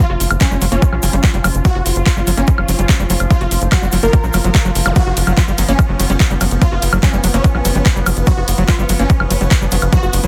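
A dense, heavily limited modern master with light reverb carries this intense, alien psychedelic trance excerpt, where a punchy, up-front electronic kick and a tight, saturated sequencer bass with ring-modulated bite drive under a techno kit of handclaps, metallic hats, ride cymbal and woodblock, plus a grainy, close tube shaker. A detuned supersaw stab leads the melody through phaser and digital delay, while a screaming, squelchy acid riff sits in the background, distorted with chorus, cassette tape colour and delay. A bubbling stepped-filter texture holds sustained chords, a deep, moody, warbling pad hums faintly beneath, a juicy blip pluck returns at 5.0 s, and a brief zap flickers at 4.9 s.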